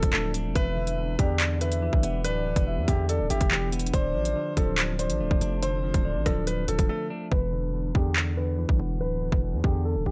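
Tense and dark, this drill excerpt moves at 142 BPM in a half-time 4/4 feel, centred on E phrygian with chords shifting from Dm7 to Em7 and back before landing on E7(no3). An overdriven drum kit sits up front with a hard-clipped kick, crisp hi-hats, handclaps and rim clicks, while a saturated, aggressive 808-style bass with a noise layer and fast, decaying attack rumbles heavily beneath it. A mellow, vintage baby grand piano carries the melody through a low-pass filter, joined by a clean, fingered electric guitar bathed in spring reverb and filtering. A deep, detuned sawtooth pad holds very quiet sustained chords with chorus and built-in reverb until 7.3 seconds, and a round, octave-layered synth lead with chorus, tremolo, vibrato and tape echo adds a second line from 0.6 to 6.4 seconds. After a brief break, the final stretch mutes the hi-hats and brings a filter sweep, all within a dry mix.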